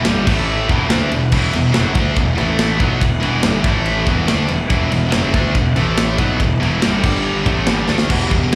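Driving straight 4/4 at 142 BPM, this aggressive, relentless heavy metal cut in E minor stacks two bright, distorted high-gain guitar riffs, one scooped and touched with slapback echo, over a growly, fuzz-overdriven picked bass and an up-front, tight metal drum kit of kick, medium-tuned snare, china, crash and ride, while a soft, hollow stopped-flute pipe organ with a touch of chiff holds mellow sustained chords in the background as the harmony moves among Em, A5 and G5 before a drum fill at 7.9 seconds, the sound heard as a live gig through the venue's PA with club reverb.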